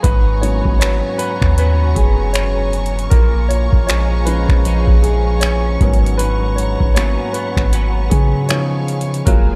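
An echo-heavy digital ambience frames this moody, late-night contemporary R&B piece, which moves at 78 BPM in 4/4 with a swung sixteenth-note feel in G# dorian. Up front, a booming, overdriven analog drum machine with a deep kick, metallic hats and finger snaps sits beside a clean, sine-like 808-style bass, while a dark, mellow baby grand piano with dub echo takes a solo across the whole passage. Compressed, picked electric guitar arpeggios, recorded direct, pass through ensemble chorus and dub echo, and a lush bowed string section holds smooth sustained chords as the harmony moves from G#m11 to A#m7 and back, closing on C#7.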